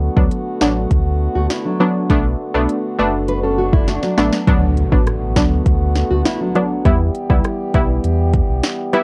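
A straight 4/4 dancehall groove comes from an up-front electronic afro-pop kit, with deep kick, sharp snare, crisp hats and rim clicks entering at 0.2 s, over a full sine-and-triangle sub bass doubled at the octave, and a drum fill at 3.9 s. A bright, detuned sawtooth pluck with chorus and sidechain pumping carries the accompaniment, while a mellow, distant French horn section holds pumping chords through D6, Bm7 and Em, and a dark, fingerpicked nylon-string guitar adds arpeggios with audible finger squeak and analog delay from 1.4 to 6.8 s. A very quiet electronic swell rises into an impact at 4.5 s, and the whole mix sits in light reverb with a worn, warbly cassette-tape pitch drift, giving this cut from a longer piece a summery, bouncy feel.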